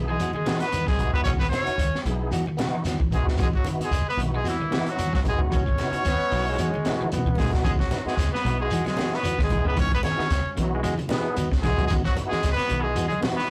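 A reedy tonewheel organ turning through a slow rotary speaker and a round, foam-muted dub bass open this driving, funky afrobeat excerpt, joined at once by a bright trumpet melody with vibrato, a raspy tenor saxophone second line, slightly broken-up picked guitar arpeggios through a phaser, clean fingered guitar stabs, a gritty breakbeat kit with a high-tuned snare, low-tuned ringing congas and a grainy, distant shekere, while a forceful bass trombone adds a second line from 6.1 to 11.5 seconds and a drum fill at 7.0 seconds leads back into the opening section of this rough rehearsal-room recording with light reverb.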